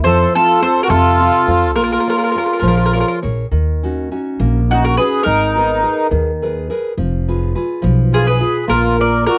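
Lightly reverberant home cassette sound frames this romantic, passionate Italian folk serenade passage in rubato 6/8 at 70 BPM, shifting from Bb harmonic minor into Eb minor at 3.5 s, as a round, mellow picked mandolin carries the melody up front over a reedy, sweet accordion second line with light tremolo tuning, a fingerpicked nylon-string guitar with deep classical warmth, and a woody, dark pizzicato upright bass edged with tube saturation.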